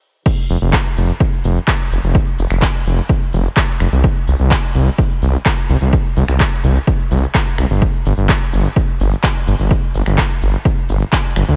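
This short cut from a longer festival progressive house track sounds dry and tight, with little reverb and the low end trimmed, as it crashes straight into a drop at 0.3 seconds after a brief stop. The mood is triumphant and uplifting, driven by a straight feel. A punchy, overdriven electronic kick sits up front, layered and re-recorded in a large room. Around it, a big-room dance kit with crisp hats, shaker, handclaps, finger snaps and crash cymbal adds gritty overdrive of its own. From 0.5 seconds a thick, detuned saw bass pumps against the sidechain, its beating, menacing sawtooth edge blended with a mellow sine body and held in sustained notes up front.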